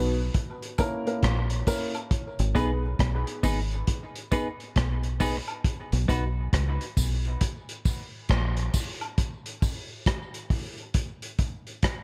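A dark, woody upright piano with audible action noise and a round, foam-muted fingered bass open this hypnotic, meditative dub reggae excerpt in G# minor at 68 BPM with a swung 16th feel. A muffled lo-fi vintage drum kit of punchy kick, hi-hat and rim click and saturated tambourine and woodblock echoing in the background under light reverb soon join them. A compressed clean electric guitar with subtle chorus and dub echo arrives just before the piano's dub-echoed stabs end at 2.8 seconds. The chords move from A#dim to G#m before the harmony drops out at 5.6 seconds, and the drums carry on to 12.0 seconds.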